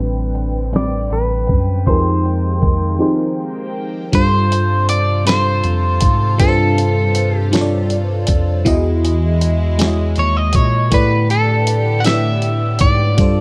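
Sultry and yearning, this slow R&B excerpt moves in a six-eight lilt at 53 BPM, its whole sound darkened by a low-pass filter and kept dry and close. A mellow, clean tine electric piano carries the bass line up front, while an FM electric piano with a soft pad layer supplies lush, dreamy accompaniment shimmering with chorus and phaser. Behind them, a warm studio string section holds sustained, floating chords, bowed sul tasto with a soft attack. A dusty, sampler-style soul kit enters at 0.3 seconds with a thumpy kick, fat snare and hi-hat, compressed and tape-warm, and an electric guitar at the edge of break-up picks out the melody from 0.8 seconds, touched with slapback echo. A filter sweep opens the piece over Am11 and Fm11, a break falls between 3.0 and 4.1 seconds, and the harmony then drifts through G9sus4, Emaj7 and A9sus4.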